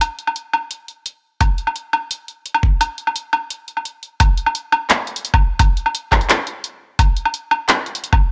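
Drum and bass at 172 BPM in a half-time 4/4 feel, this cinematic, tense excerpt opens with an up-front electronic kit of handclaps, bright hi-hats and woodblock, joined at 1.4 seconds by a layered, knocking electronic kick, both re-recorded in a small room, before a drop hits at 4.2 seconds, all captured dry with gritty transformer saturation and cassette tape character.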